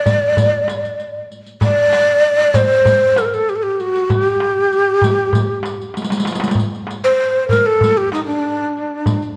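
Worn, warbling cassette tape with its pitch drift and a reverberant recital-hall ambience frames this soulful, longing Arabic maqam ensemble piece at 97 BPM in 4/4, tuned to A4 = 442 Hz and cut from a longer work, where an up-front, breathy end-blown ney carries the melody between D4 and D5 with vibrato, soft attacks and an unsteady tone, while a crisp metal-shell darbuka and a softly played riq with bright, band-limited vintage jingles keep time beneath it, and a drum fill from 6.0 to 6.6 seconds leads into a new section.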